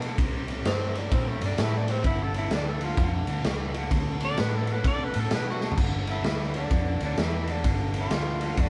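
A band plays live in one room, caught with moderate studio reverb in this short cut from a longer electric blues shuffle that feels laid-back and rollicking. At 129 BPM in 4/4 with a 64% swing on the eighths, the music sits in G mixolydian as the chords move through C5, G5, D5 and back to G5. A biting, overdriven guitar picks out a bright riff in its low range while a vintage foam-muted fingered bass, round, amped and punchy, holds down the bottom. The raw garage drum kit is up front, saturated and gritty with a rolled-off top, a punchy kick and a medium-tuned snare, with crash, ride and toms in the mix and a fill at 5.5 s. Entering at 0.7 s, a warm tenor saxophone takes a jazz-style solo that sounds distant and roomy, shaded with light vibrato and scooped notes.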